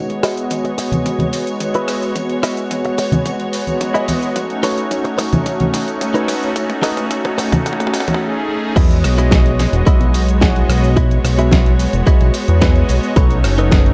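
Sunny and feel-good, this nu-disco excerpt at 109 BPM in E major opens with a smooth, chorused analog pad, a lush distant string section, a gritty sampler-style drum kit with a fat snare, a bright, twangy clean guitar riff under a filter sweep and dub echo, and tambourine and congas building through a drum fill until the drop at 8.8 seconds brings in a glossy, up-front synth bass and a punchy overdriven kick over Emaj9 and B9 chords.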